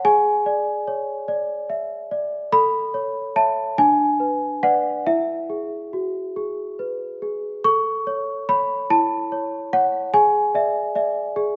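A worn, slightly out-of-tune celesta plays alone, up front and bell-like, in this tender, dreamy classical lullaby fragment in A major, moving gently in 6/8 at 48 dotted-quarter beats per minute through a 2.0-second concert hall reverb, its delicate, sweet tone circling chords such as E7/G#, A, Bm/D and E before a phrase returns at 7.6 seconds.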